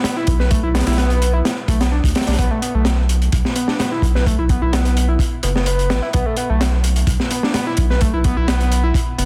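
Breakbeat at 128 BPM in B minor, this short cut from a longer piece has a gritty, swaggering feel built on a crunchy acoustic drum kit with a high-tuned snare, tight kick and hi-hat, saturated and dark with a rolled-off top and sitting up front. A thick, sine-like sub bass enters at 0.3 seconds, deep and sustained with a fast attack, while an overdriven sawtooth-and-square synth lead plays a screaming, guitar-like riff soaked in distortion, chorus, vibrato and dub echo. The dense, heavily limited master carries only a light reverb.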